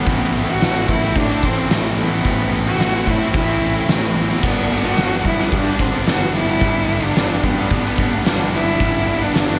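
A bowed cello carries the melody from the opening moment of this brooding, angsty alternative rock excerpt. Its tone is rich and smooth with vibrato, sitting close and touched by a slapback echo. Beneath it, an overdriven electric guitar and a compressed fuzz guitar play picked riffs, the fuzz part tucked into the background with its own slapback echo, while a growly, overdriven electric bass anchors the low end. An oversized, low-tuned acoustic drum kit joins at 0.1 seconds and sits up front, with a boomy kick, fat snare, dark crash and hi-hat cymbals, and a saturated, gritty, pumping room character. The harmony moves from Amadd9 to G at 4.4 seconds over a straight 4/4 pulse. A lush hall reverb gives the piece a big arena sound, suiting the quiet-loud heart of the style.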